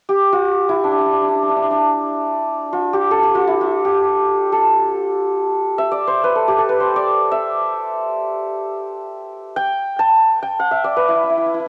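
A home cassette recording with a wet spring reverb and studio ambience gives this short Persian passage an intimate, slightly worn character. It unfolds in free time, tuned to A4 = 441 Hz, in a melancholic and soulful mood. A solo acoustic santur carries the melody from 0.1 s to 11.7 s, moving between D4 and A5. Its hammered strings sound bright and shimmering, and they sit up front in the mix. Cassette tape colouring and an analog delay on the santur let each ringing note linger in the reverb. Cut from a longer piece, the fragment stays within a single section throughout.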